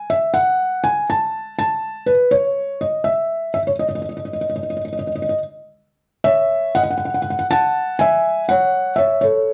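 A felt-muted upright piano plays alone in this sunny, carefree calypso fragment, its soft, mellow tone sitting intimate and up front with audible action noise, as a bare opening phrase gives way at 6.0 seconds to a new section moving from Esus2 to C#m, all set in a moderate studio reverb and a dark, warm production.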